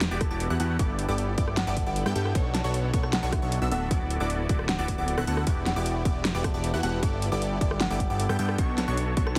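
A half-time 4/4 groove at 154 BPM drives this lush future bass passage, tuned to A4 = 443 Hz. A hard-clipped electronic kick and a layered dubstep kit with a huge snare, rim click and metallic hi-hats sit up front, while a fat, detuned sawtooth bass pumps under sidechain compression. A punchy supersaw stab carries the riff through a phaser; in the background, a woody, hollow kalimba melody and noise-layered unison pluck arpeggios ring out with delay over Em9, G69, Bm9 and D69 chords, all wrapped in a heavily compressed, radio-like digital ambience.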